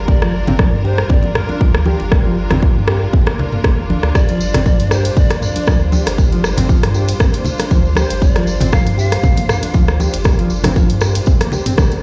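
A punchy, up-front electronic kick drives this hypnotic, spiritual afro house fragment at 118 BPM in G minor, layered with a house kit's hi-hat, rim click and toms, close and dry hard-handed congas, a jingly tambourine entering at 4.2 seconds, a round sine sub bass and thumb-plucked nylon-string guitar arpeggios pumping under sidechain, lush bowed strings sustaining a Gm7 chord, and an airy bamboo pan flute melody trailing dub echo, all heard through the stone-room reverb of a big sound system in a bare space before a band accent at 11.8 seconds.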